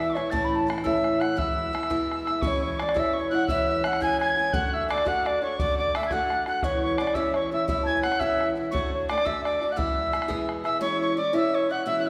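A rollicking, cheerful Celtic jig in 6/8 at 114 BPM opens with a wooden flute carrying the melody in a pure, vibrato-tinged voice with a crisp attack. Above it, a tin whistle plays an airy, tongued second line with plenty of chiff, while an up-front picked steel-string acoustic guitar accompanies in E mixolydian, moving mostly between E6 and D. A boomy, close and dry bodhran drives the beat until 10.7 seconds, and the whole excerpt sits in a lush recital-hall reverb, cut from a longer piece.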